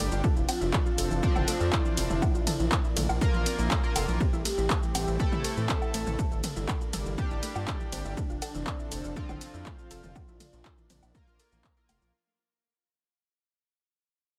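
A punchy analog kick and tape-warm drum machine of handclaps, hi-hat, ride, shaker, toms and woodblock drive this 121 BPM straight 4/4 melodic techno excerpt, a driving, cinematic drop cut from a longer piece that fades out from 4.2 seconds, where a gritty, saturated sync bass, edgy nasal polysynth stabs with tape echo, a thick detuned unison lead with vibrato, a warbling lo-fi pluck arpeggio in the background and a lush phased pad all pump against the kick over F6, Bb, Am and Gm chords in a dry mix.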